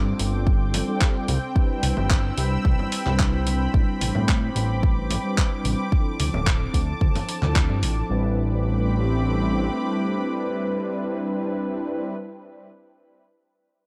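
A punchy, layered electronic kick sits up front in this cosmic, sensual nu-disco excerpt, with a fat, nasal analog bass of detuned sawtooth and square waves beside it, its filter pluck and a filter sweep over the opening 8.1 seconds. Mellow synth brass, round and brassy, carries the accompaniment, shaped by its own filter sweep along with chorus, phaser, digital delay and sidechain pumping. Beneath it, a lush unison pad of thick, detuned sawtooths holds slow-attack chords with chorus and its own pumping, moving from G7sus4 through Cmaj7, Am11 and Dm7. A gritty, tape-warm sampler-style kit adds handclaps and hi-hat in a small room, while bright, band-limited congas sit in the background. The drums and congas stop by 7.9 seconds and the bass drops out at 9.7 seconds, leaving the brass and pad to ring over Am11 in a dark, ambient production.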